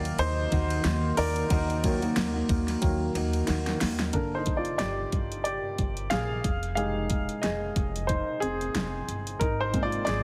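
Heavily compressed, radio-style sound with light reverb and small-room ambience frames this anthemic piano-driven pop passage at 91 BPM with a swung 16th feel, where a polished, present upright piano with short sustain sits up front throughout, a full-bodied fingerpicked jumbo acoustic guitar with audible finger squeak plays a riff until 4.2 s, a woody pizzicato upright bass holds the low end, and an electronic, layered, overdriven pop kit with a knocking kick and fat snare drives the groove, landing a fill at 3.5 s as the harmony moves from Ebm through Gm and Fm7 to Abadd9.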